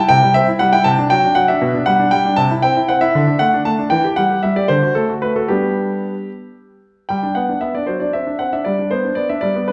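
Heard from further back in a recital hall with a generous, reverberant wash, this graceful and cheerful classical-period sonatina excerpt in a lilting 6/8 features a solo concert grand piano with a clear, natural tone and deep bass, moving through simple, elegant harmonies before its opening phrase returns at 7.1 seconds.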